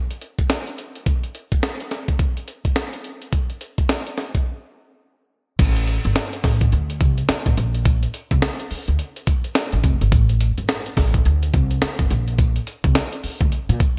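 Bouncy and slick, this excerpt of new jack swing R&B in D minor moves at 106 BPM in a swung 4/4, opening with a gritty, pitched-up, sampler-style breakbeat kit of thumpy kick, medium-tuned snare, hi-hat, tambourine and crash, compressed, tape-toned and treated with gated reverb. After a break from 4.5 to 5.6 seconds, a woody pizzicato upright bass with steel strings enters at 5.6 seconds, sitting up front alongside the drums. The overall sound is bright and dry, with a 1980s-style digital sheen.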